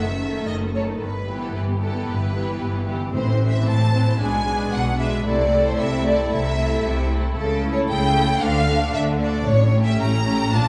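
The recording sits in a reverberant recital hall, with a wet, 1.8-second tail of reverb and the ambience of a small room around the strings. This fast, dramatic and urgent romantic movement for symphony orchestra moves at 114 BPM in 4/4 with a rubato feel, tuned to A4 = 441 Hz, and is cut from a longer piece. A focused violin section carries the melody from the background, while a second violin section with a warm, smooth tone plays up front on a higher line. Beneath them, a clear viola section with a smooth top fills in the accompaniment, and rich cellos join lush, even double basses on the bass. All the strings play bowed with vibrato throughout. A very quiet timpani struck with hard mallets adds articulate accents at 3.1 and 9.5 seconds, as the harmony darkens through diminished chords toward a tense A7b9 at the close.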